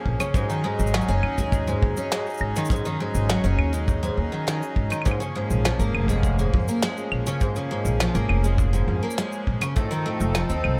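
A small, lightly reverberant room frames this delicate, autumnal folktronica excerpt, where an up-front picked twelve-string acoustic guitar plays shimmering, octave-doubled arpeggios drenched in lush chorus and delay over a woody, thumpy pizzicato upright bass. A reedy accordion with slow beating holds sustained chords underneath, while a punchy acoustic kick drum in a pumping studio room sits beside electronic claves, shaker and a tiny produced snare. The harmony moves from Ab7sus4 to Bbm7 at 5.1 seconds and reaches F7 at 9.8 seconds before the cut.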